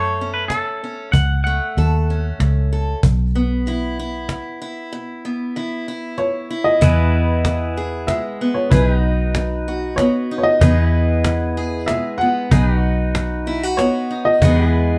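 Heartfelt and easygoing, this honky-tonk and classic country waltz moves at 95 BPM in 3/4 with a straight feel in E major. A clean, twangy electric guitar with tape echo opens with a short second line that ends at 2.4 s, while a bright, picked acoustic archtop guitar, with audible finger squeak, picks out accompaniment throughout. Underneath, a vintage foam-muted fingered electric bass sits up front with a round, punchy tone, and a snappy cajon played with hard hands enters at 0.5 s, close and forward in the mix. A dark, woody upright piano takes the melody from 6.2 s, its smooth, short-sustain notes carrying audible action noise and a plate reverb. At 6.8 s a compressed pedal steel guitar joins with sustained chords, slide and volume swells, as the harmony settles from F#m and Bsus4 into an alternation of E and B. A moderate studio reverb surrounds the whole of this excerpt.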